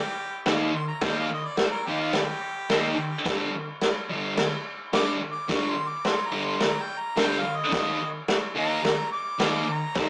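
A bright, overdriven harmonica opens this menacing, gritty garage rock solo at 107 BPM with light vibrato and scooped notes, joined at 0.5 seconds by a thick, double-tracked fuzz guitar riff and an up-front vintage drum kit with a punchy kick, medium-tuned snare, crash cymbal and rolled-off top, all captured in a rough rehearsal-room sound with tube saturation, a small-speaker tone and moderate reverb.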